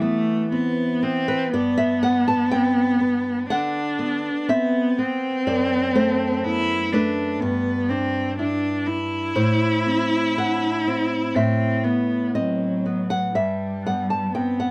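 Yearning and melancholic, this slow, rubato romantic duo at 61 BPM in 4/4, cut from a longer piece, pairs a dark, woody bowed cello singing the melody with vibrato and a small-sounding fingerpicked nylon-string guitar whose fresh strings and audible finger squeaks carry the accompaniment, both up front in a moderate small-room reverb as the harmony drifts from Em through G, D13/F# and Am to a closing Gmaj13.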